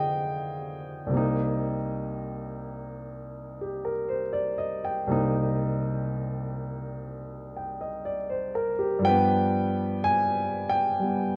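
Swung eighth notes in a slow four give this short fragment of a longer piece its relaxed, smoky lilt. A baby grand piano plays solo throughout, sounding warm, natural and up front, and it ranges from C2 in the bass up to Ab5. The cool, late-night harmony opens on Fm7, settles onto Cm7 at 1.1 seconds and lingers there before turning to G7 at 9.0 seconds. A modest booth ambience with a short decay keeps the piano close and intimate. The whole recording carries the worn character of old cassette tape, with a gentle warble and drifting pitch that add a hazy, nostalgic tint.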